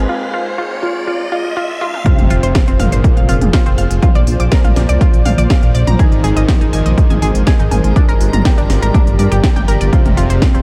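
A punchy, up-front kick and a menacing, saturated detuned saw bass dominate this dark, melancholic melodic techno excerpt in F dorian at 122 BPM, with a riser, a filter sweep on an analog synth lead and a drum fill building from the opening break into a drop and impact at 2.1 seconds, where the chords move from Fm through Bbadd9, Abadd9 and Gm. Sidechain pumping breathes through the smooth, vibrato-laden lead, the moody wave-folded pad, the lush unison pluck arpeggios with analog delay, the fat polysynth second line and a blurred granular cloud pad. The techno kit adds a cracking snare, hats and toms from 1.8 seconds, and a tense, string-like drone enters very quietly at 6.8 seconds beneath light reverb.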